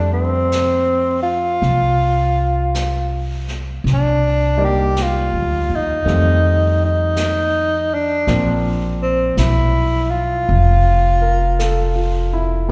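A breathy alto saxophone leads this romantic, late-night jazz ballad at 54 BPM in F major, carrying the melody from the first moment with a whispered subtone, soft attack and light vibrato that sits intimate and up front. A grand piano with a smooth, vintage character and short sustain accompanies it from the start, while a pizzicato upright bass on steel strings gives a woody, thumpy, dark low end placed close to the listener. A jazz brush drum kit joins at 0.5 seconds, its brushed snare and hi-hat sounding distant and roomy, as if from a small room, beneath a gently swung eighth-note feel. The harmony moves from Fmaj7 through Cm9 and F7 to Bbadd9, and the saxophone, piano and drums all carry a slapback echo. The whole piece, cut from a longer performance, comes across like a live gig heard through the venue's PA with recital hall reverb, with the saxophone dropping out at 12.3 seconds just before the rest of the band finishes.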